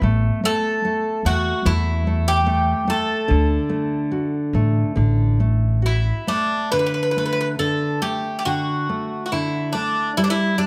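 Recorded with close, detailed microphones in a moderate recital-hall reverb, this mournful, passionate fado-style ballad in D major drifts at about 71 BPM with a rubato feel, as a full-bodied, fingerpicked nylon-string guitar and a woody, thumpy pizzicato upright bass open on an A5 chord before moving to D, a bright, metallic Greek bouzouki with double strings carries the melody from 0.5 s, the bass drops out at 6.1 s, and the chords fall away at 10.1 s in this fragment cut from a longer piece.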